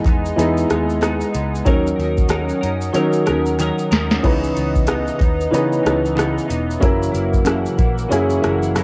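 Indie pop with a bedroom-pop haze, this mellow 93 BPM fragment in C# dorian sways on a 16th-note swing as Emaj7, D#m7, C#m9 and F#7 chords drift by under light digital ambience and a cassette-tape softness. A woody upright piano and a clean, compressed semi-hollow guitar, its tone wobbling with analog chorus and warbly pitch drift, carry the accompaniment over a flute-like, slow-attack pad with its own chorus. From 0.1 seconds, a round, foam-muted picked bass joins an up-front analog rhythm box with a deep kick, crisp snare, metallic hats and shaker, plus a very quiet, dry group handclap, and the drums play a fill from 3.6 to 4.2 seconds.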